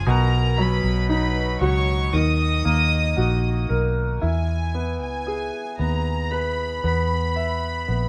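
In a slow, straight 4/4, this short excerpt of an emotional, melancholic pop ballad opens with a soft-attack violin section carrying the melody in a floating, smooth sul tasto tone, over clear concert grand piano chords with deep bass, moving from B to Ebm before shifting to E at 4.2 seconds. A dark, round, foam-muted electric bass sits up front underneath. Light reverb and small room ambience give the whole piece a rough home demo feel.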